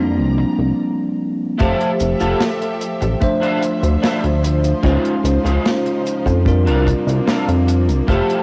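A straight 4/4 pulse at 74 BPM carries this faded, dreamy vaporwave fragment in F major, where a bell-like tine electric piano and a glossy, chorused synth bass sit up front over smooth bowed studio strings and a dry, deep reggae kit of cabasa, filtered hi-hat and muffled snare, with a break at 0.8 seconds before a tight kick and a twangy, slightly broken-up electric guitar riff enter at 1.6 seconds, the whole mix set in a small, lightly reverberant room under a dusky cassette filter as the chords drift through Fmaj9, Dm9 and Dbmaj9.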